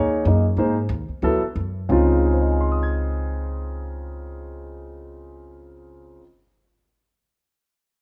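Jazz with a warm, relaxed swing feel, this short cut from a longer piece has a dark, mellow concert grand piano comping up front beside a woody pizzicato upright bass, both captured together in one room with light reverb. The tempo slows over the first 1.9 seconds before the harmony settles onto Dbmaj7, and the bass stops at 6.2 seconds while the piano, with its deep low end, continues alone until 6.5 seconds.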